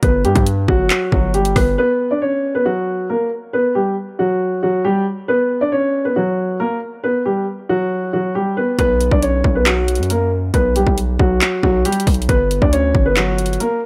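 Hard-hitting, dark trap hip hop at 137 BPM in a half-time feel, cut from a longer piece, where a mellow, low-pass-filtered grand piano carries the melody throughout over Gmaj7 and B5 chords, while a saturated 808-style bass with a noise layer and an overdriven drum kit of hard-clipped kick, bright hi-hats, handclaps and rim clicks hit up front, drop away by 1.8 seconds to leave the piano alone in digital ambience, and crash back in at 8.8 seconds.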